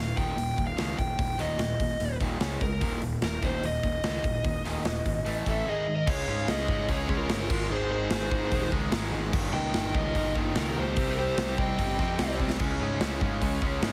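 A biting, overdriven lead guitar carries the melody with plate reverb over this energetic, swaggering hard rock excerpt in Eb mixolydian at 147 BPM, joined from 5.5 seconds by a darker, smooth second lead sitting back in the mix. Underneath, bright and warm hollow-body riff guitars pick out riffs in the background, with a tight, double-tracked distorted guitar entering at 6.1 seconds, while a punchy fuzz bass and an up-front, big-room drum kit with bright cymbals and a boomy kick drive the groove to a drum fill at 12.4 seconds. Chords move from Eb through Db5 and Ab to Cm, all under light reverb and a heavily compressed radio sound.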